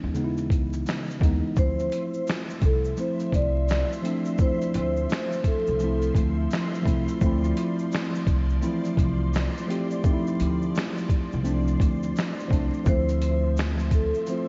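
A swung groove in 4/4 sets the pace for this reflective, nostalgic lo-fi hip hop excerpt, carried by a sampler-style drum kit that sits up front with a thumpy kick, a medium-tuned snare, finger snaps, hi-hat and shaker, all compressed, pitched down and muffled as if re-recorded in a large room. A woody, dark pizzicato upright bass holds the low end from the start, beside a worn, slightly out-of-tune tine electric piano that sounds close and direct through cassette tape and a low-pass filter, moving from C#m9 to Dm9. At 1.6 seconds a mellow vibraphone with soft mallets and slow motor vibrato brings in the melody, returning at 12.9 seconds for a brief new section. Alongside it, a vintage string machine voicing violas adds soft-attack sustained chords with ensemble chorus low in the mix, and a grainy, very quiet tube shaker ticks beneath. The whole mix feels dreamy and soaked in lush hall reverb, dusted with vinyl crackle and rolled off at the top.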